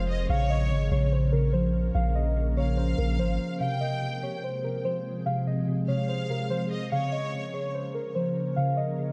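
A deep, sine-toned 808-style bass sits up front in this dark, hard-hitting hip hop fragment, its long mellow notes fading away before it drops out at 3.4 s. Over a half-time feel, muted felt-like synth keys carry the melody with a soft, intimate tone thickened by chorus, while glassy digital keys with a detuned, airy edge and a filter sweep supply the low accompaniment. An ethereal pad holds sustained chords underneath, its slow attack and long release colored by ensemble chorus, phaser and built-in reverb. A rich studio violin section adds a smooth, vibrato-laden second line through a delay until 7.7 s. The harmony moves from B-flat minor to F minor when the second section begins at 3.6 s, then returns to B-flat minor, all set in a lush hall reverb that gives the production a shadowy, enveloping depth.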